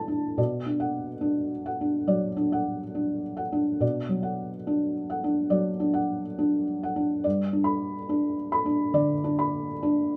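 Neoclassical minimalist piano in a wistful, reflective mood, played rubato on a single felt-muted upright piano that carries the whole passage alone. The thick felt gives the soft instrument a dark, intimate tone with short sustain, the mechanical noise of its action is clearly audible, and the piano sits up front in the sound. A moderate studio reverb surrounds the playing as the harmony moves from B minor to G at 7.2 seconds in this brief cut from a longer piece.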